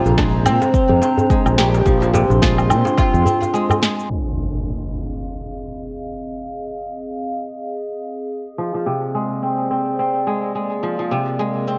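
A swung 107 BPM groove in 4/4 drives this warm, hypnotic organic downtempo excerpt in F dorian. An overdriven electronic kick, a sharp, filtered snare with electronic shaker and woodblock, and a tight, cracking djembe set in the background carry the rhythm, while a growly, up-front fretless electric bass with tube saturation pumps beneath them. Over Bb9 harmony, a woody, plectrum-plucked oud with digital delay carries the melody, and a crisp, ringing kora plays fingerpicked arpeggios. A dark, nostalgic pad built from square and triangle tones holds sustained chords throughout, with chorus, its own reverb and sidechain pumping. After a short break, at 4.1 seconds the kick, bass, djembe and oud have dropped away, an electronic impact hits, the harmony moves to Fm7, and a filter sweep runs to the end. The kora returns at 8.6 seconds with the Bb9 chord, all of it wrapped in a lush hall reverb and the muffled, pitch-drifting haze of old cassette tape.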